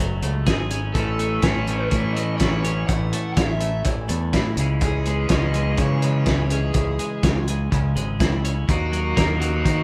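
Indie rock in A lydian at 124 BPM, wistful yet upbeat, played by a band live in one room with light reverb as the chords move from F#madd9 through A and C#m to D#m. A bright, twangy twelve-string electric guitar and a biting overdriven guitar share the riff from the start over an up-front growling fingered bass with its own drive, and a cloth-damped, thuddy drum kit with a fat snare, tight kick and muffled, gritty, lo-fi character joins at 0.2 seconds. At 0.9 seconds a dark, raw garage guitar adds the melody on top.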